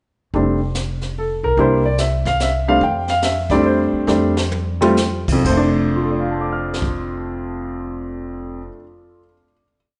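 A relaxed, swinging jazz piano trio piece in 3/4 and F major at 123-146 BPM: a clear, up-front upright piano plays a bebop-style theme with syncopated comping and rootless voicings, a woody, thumpy gut-string upright bass plays a pizzicato two-feel line, and a brushed drum kit with dark cymbals, a high-tuned snare and a boomy kick adds snare sweeps, with the tempo slowing from 2.8 seconds, a drum fill at 4.1 seconds and a final held chord from 5.5 seconds ringing in a moderate recital-hall reverb.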